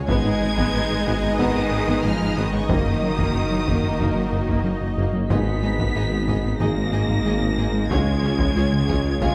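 Brooding and tense, this excerpt from a hybrid orchestral and electronic film score moves at 92 BPM in a straight 4/4, set in G# dorian and built on a progression from G#m through D#m/F# and back to G#m before landing on C# at 7.9 seconds. A high violin section carries the melody with a lush, vibrato-rich tone and soft attack, while a second violin line and a viola section fill the background with expressive, bowed ensemble color. Beneath them, a clear cello section, a very quiet double bass section and a mellow tuba anchor the low end, joined by a distant French horn section holding sustained chords. On the electronic side, a swirling, thick detuned saw bass treated with phaser occupies the deep register, a smooth, dark synth bass plays a riff with a ring-modulated edge, and a hollow, flute-like pad with chorus sustains chords in the background. A very quiet taiko ensemble struck with hard sticks adds a vintage, band-limited pulse, and the whole arrangement sits in a moderate scoring stage reverb that lends the strings and brass a sense of space.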